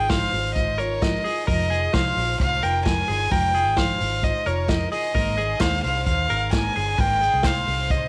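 A dark, nasal violin with light vibrato and slapback echo carries the melody up front in this breezy, nostalgic slice of jangly indie pop, over a full-bodied fingerpicked steel-string acoustic guitar, bright, twangy twelve-string electric guitar arpeggios and a round, foam-muted vintage electric bass. A vintage drum kit with a punchy kick and rolled-off top keeps a straight pulse as the harmony moves from Fm7 to Abadd9 at 5.1 seconds, and a hollow group handclap slips in very quietly at 5.6 seconds. Light reverb and studio ambience frame the intimate sound.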